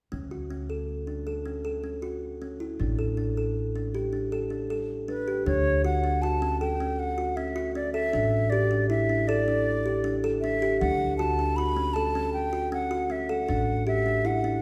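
An airy, crisp-edged baroque flute enters at 5.1 seconds to carry the melody over ringing, woody kalimba arpeggios and a plucked steel-string upright bass in this playful, hopeful contemporary instrumental excerpt at 157 BPM in 7/4, moving between Dmaj7 and A7sus4 in D major, tuned to A4 = 437 Hz, with a recital hall reverb heard from further back in the room.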